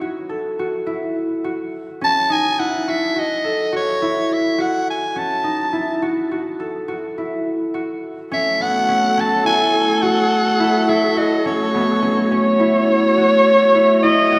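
Bathed in a wet church reverb, this hopeful, playful chamber piece in A lydian moves in 11/8 at 210 BPM in eighths, opening on a ringing, fingerpicked concert harp playing arpeggios. A raspy, gritty soprano saxophone takes the solo melody at 2.0 seconds with pop-style vibrato. At 8.3 seconds a woody, bowed viola enters with a smooth, sul tasto second line, and at 8.5 seconds an evolving wavetable pad adds bright, detuned sustained chords with chorus and a slow attack.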